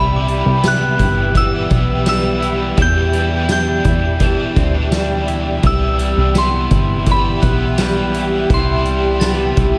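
Ethereal and floating, this dream pop excerpt drifts at 84 BPM in 4/4 with a straight feel in C lydian, its chords moving from Cmaj7 to Em7 at 2.8 seconds and back to Cmaj7 at 5.6 seconds. A soft, pure synth bell carries the high melody, its vintage FM tone warbling through chorus, phaser and tape echo, while an airy pad holds sustained chords with a slow attack, long release, ensemble chorus and its own built-in reverb. Two electric guitars fill the accompaniment: a bright, overdriven stack guitar colored by harmonic tremolo and analog chorus, and a twangy, slightly broken-up guitar picking arpeggios with subtle chorus and tape echo. Underneath, a plucky analog bass gives a punchy, funky low end with fast attack and decaying filter pluck, and a distant, roomy soft-mallet drum kit with a punchy kick, medium-tuned snare, hi-hat and tambourine enters at 0.3 seconds. A very quiet, metallic glockenspiel struck with brass mallets rings faintly through the opening until 3.1 seconds and returns at 7.4 seconds. 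The mix is dreamy and soaked in a moderate plate reverb with a 3.7-second decay.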